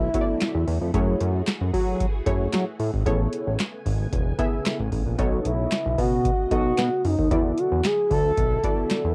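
A brief gliding lead over silky string-machine chords and a fat, detuned analog bass opens this slick, late-night early-eighties boogie funk excerpt at 113 BPM, as a punchy, chorused polysynth comp and a booming, overdriven drum machine with a deep kick, crisp snare, handclaps and metallic hats settle into a straight 4/4 groove through chords from E9sus4 to F#m9, Amaj9 and B9, until the expressive, warbling portamento lead returns at 5.5 seconds with vibrato over the phased strings, all carrying the light reverb and tape grit of a home cassette recording.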